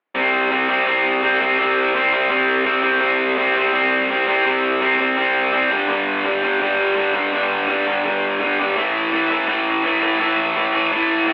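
Punk riffing at a rowdy, rebellious charge, a lone distorted electric guitar plays its picked power-chord riff from C5 through G5 to A5, bright, compressed and up front in a rough rehearsal room with a thin telephone-like sound and a short small-room reverb, in this brief 11-second excerpt cut from a longer piece.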